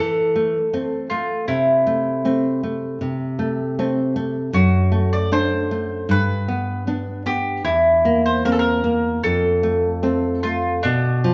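A mellow, round mandolin carries the melody up front with picked double strings, singing an elegiac, yearning line in A minor over a deep, fingerpicked nylon-string guitar that plays the accompaniment. This romantic duo moves at a rubato 78 BPM in 4/4, tuned to A4 = 443 Hz, with the harmony passing from Am through D7/F#, G and F to a closing Bdim. Recorded live in one room with a wet large-studio reverb and a softened top end, this 11.3-second excerpt is cut from a longer piece.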